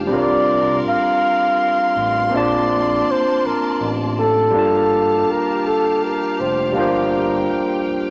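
A gritty, overdriven tine electric piano opens this short cut from a longer R&B piece, sitting up front as though played through a combo amp, with a lush bowed string section and a smooth synth bass entering alongside it. The mood is intimate and tender, moving at a slow 54 beats per minute in a straight 6/8. At 0.1 seconds a breathy, dark flugelhorn takes the melody as the soloist, its soft attack, scooped notes and light vibrato giving it a whispered, pop-style delivery close to the listener. The strings hold rich, focused sustained chords beneath, while the bass blends detuned sawtooth, square and triangle waves into a nasal, sustained low end with its own vibrato. The harmony drifts from C9sus4 to Bbmaj9 at 2.3 seconds and settles on Gm9 at 4.5 seconds, all wrapped in a moderate studio reverb.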